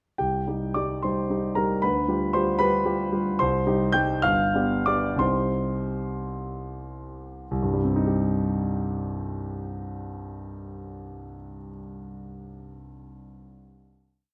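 A grand piano with a warm, natural tone sits up front under close, detailed microphones, ringing into a moderate recital hall reverb. This short, complete romantic character piece in C minor moves in a rubato 6/8 at roughly 47 to 78 BPM in dotted quarters, stormy and passionate, the solo piano carrying a tune in octaves over repeated chords. The music slows from 2.6 to 7.5 seconds, and a final chord arrives at 7.5 seconds and rings until 12.4.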